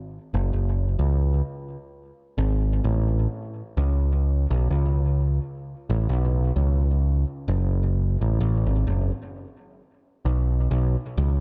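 Reggae at a slow 65 BPM with a swung sixteenth-note feel, this heavy, hypnotic excerpt from a longer piece features an overdriven picked electric bass playing solo from 0.3 seconds to the end at 11.4 seconds, staying low in its range. The bass sits up front with a direct, amped tone, gritty with overdrive and trailed by tape echo, all inside a light reverb. The passage moves from an opening section into a second one at 3.8 seconds.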